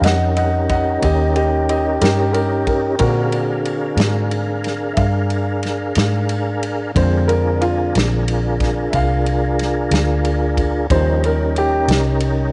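A swaggering, soulful slow blues in a straight 12/8 at 61 BPM, cut from a longer piece, features a woody upright piano with long sustain in a solo over Eb7, Bb7 and back to Eb7, while a smooth tonewheel organ with key click holds sustained chords through a slow rotary speaker and chorus vibrato, a dark, round, foam-muted fingered electric bass sits punchy and up front, and a distant soul drum kit with a tight kick, medium-tuned snare and dark ride cymbal plays under light reverb, the whole recording dull at the top with a faint mains hum.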